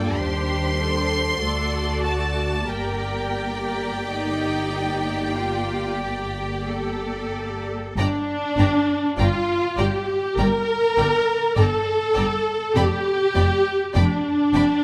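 The music moves in a flexible 4/4 with generous rubato, giving this slow, romantic movement for string orchestra an elegiac, solemn breath. A rich first violin section carries the melody high in its range with focused vibrato, while a second violin section, clear yet distant and intense, sings a supporting line beneath it. The viola section sits up front as the most prominent voice, its bowed accompaniment lush, and the cello section adds a close-sounding bass line. Underneath, the double basses lay a smooth, even foundation with only light vibrato. The opening phrase returns at 8.0 seconds, and the passage, cut from a longer piece, settles onto a G7 chord over F at 12.8 seconds, all of it framed by a moderate scoring-stage reverb.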